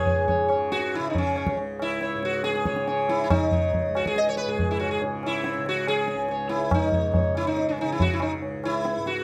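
A round, buzzing sitar sits up front with a slapback echo, carrying a solemn, longing melody over its shimmering sympathetic strings in this short Hindustani classical excerpt. Beneath it, a softly plucked tanpura holds a bright, low drone throughout, while a low-tuned tabla with a short ring joins at 0.1 seconds. Close, detailed microphones and light reverb give the whole a clear, intimate sound.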